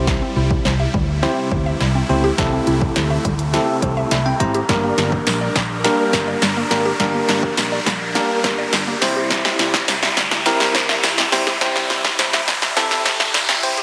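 A bell-like tine electric piano, huge detuned supersaw chords with phaser and a round, foam-muted fingered electric bass open this bittersweet, driving dance-pop build-up at 104 BPM over C and G minor, each pumping to the sidechain, as a punchy, tape-warm analog drum machine plays a fill through a filter sweep, a riser sits in the background from 0.6 seconds, a woody FM synth pluck adds chorused, delayed arpeggios, the electric piano slips in a fill at 3.8 seconds, and a jingly, very quiet tambourine joins at 5.0 seconds, the whole mix set in a lush hall reverb.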